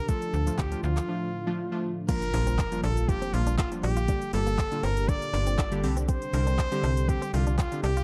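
A straight dance-pop groove rides on a smooth, overdriven R&B drum kit with a soft kick, metallic hi-hats, handclaps, shaker and a crash, under a snappy, up-front FM bass and sidechain-pumped glassy digital keys, while a sawtooth analog pad sustains dark chords in the background. A bright, close-miked trumpet with vibrato carries the carefree, upbeat melody from the very start. After a short break, a clean, twangy, direct-recorded electric guitar riff enters at 2.1 seconds, joined by a very quiet electronic impact, all set in light digital reverb within a dark, warm production.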